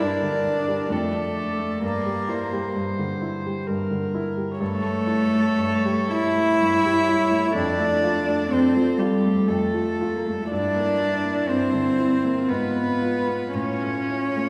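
A rubato 3/4 pulse at 55-66 BPM carries this yearning, melancholic slow romantic movement for piano quartet in D minor, where a rich, floating sul tasto violin sings the melody over an intimate, close cello second line with light vibrato and airy bow, while a soft-attack, pure viola and an up-front baby grand piano with short sustain supply the accompaniment, the whole quartet bathed in a wet concert-hall reverb as the harmony moves from Gm through Dm/F and A7/G to land on A at 13.5 s in this passage cut from a longer piece.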